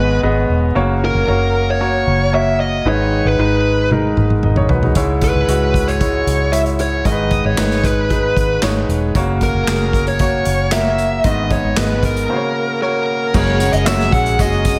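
A clear, up-front concert grand piano with audible action noise opens this driving, bittersweet piano-driven pop excerpt at 114 BPM, joined from the start by a distorted, picked bluesy lead guitar carrying the melody and a round, foam-muted vintage electric bass, with slapback echo on the guitar and piano. An unplugged drum kit enters with a fill at 3.9 seconds, bringing a punchy kick, dark cymbals, hi-hat, snare, toms, crash and handclaps as the chords move through G#m, F# and C#m. At 13.3 seconds a full-bodied fingerpicked jumbo acoustic guitar riff and a jingly tambourine in the background arrive over an F#add9 chord, with a lush hall reverb giving the recording a big arena sound.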